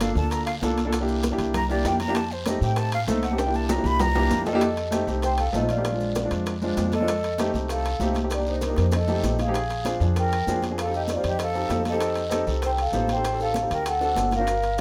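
A mellow, ringing vibraphone played with soft mallets and the motor off carries the melody in this lively, sophisticated Afro-Cuban jazz excerpt, entering at 4.5 seconds and sitting mid-forward in the mix. Before it arrives, a breathy metal flute with a straight tone, soft attack and lifted highs takes an expressive solo through the opening 4.6 seconds, then continues as a second line. A concert grand piano with deep bass sits up front in accompaniment, alongside a woody, thumpy pizzicato upright bass strung with steel. The percussion bed of bright, high-tuned congas struck with hard hands, tight bongos, ringing metal-shell timbales, a raspy guiro and grainy maracas drives the straight 4/4 at 195 BPM, punctuated by several drum fills. The harmony sits in F mixolydian, moving through dominant chords such as F7, C7 and Bb7 before closing on Am7b5 to D7, all within a moderate studio reverb.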